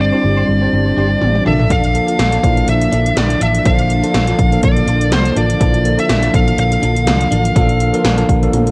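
Glossy and uplifting, this short slice of 1980s-style pop moves at 123 BPM with a light sixteenth-note swing, shifting from Gsus4 to Bbmaj7 as a dark, overdriven lead guitar carries the melody up front over a clean tine electric piano and a round, foam-muted fingered bass. A very quiet, twangy clean guitar picks a compressed riff while a mellow organ-string ensemble holds sustained chords with phaser and chorus shimmer. The electronic pad drums enter at 1.2 seconds with a fill, bringing a punchy kick, metallic hats and gated reverb on snare and toms, and another fill arrives at 8.5 seconds, all in a lightly reverberant home cassette recording.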